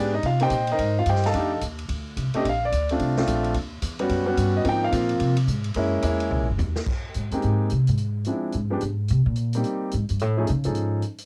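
A clear, intimate grand piano with audible action noise solos up front over a woody, thumpy pizzicato upright bass in this moody, cool swinging jazz trio excerpt, as a softer vintage drum kit with a punchy kick and rolled-off top enters at 0.2 s and plays a fill into the bass solo at 6.9 s, all with a cassette-tape tint on the piano and drums and light reverb giving the feel of a home recording.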